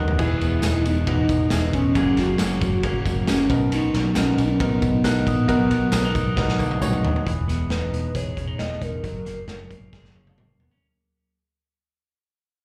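Woody, short-sustained upright piano, a dark, slightly broken-up electric guitar playing arpeggios and a round, foam-muted picked bass open this youthful, nostalgic jangly indie pop excerpt at 136 BPM in B major. They are joined by a gritty, punchy garage drum kit up front with drum fills, a warbling, detuned lead carrying the melody through chorus, tremolo, vibrato and delay, and a distant jingly tambourine. A soft, bell-like glockenspiel in the background sounds briefly at the very start and returns at 5.0 s. The piano drops out at 7.3 s and the whole thing fades until 10.8 s, heard like a live gig through the venue's PA with club reverb.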